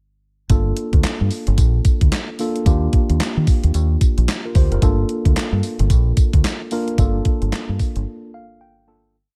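A hard-swung, up-front digital drum machine drives this bouncy, confident new jack swing piece at 111 BPM in G minor, with a thumpy kick, hi-hat, tambourine, and a gated-reverb snare layered with handclaps. A dark, round, punchy fingered electric bass plays a swung synth-funk line with muted ghost notes, while a mellow, clean tine electric piano pushes rootless chords with grace notes through Gm7, Ebmaj7 and back to Gm7. The track begins fading at 7.0 seconds, and by 8.1 seconds the bass and drums have dropped out, leaving a short electric piano fill in the break.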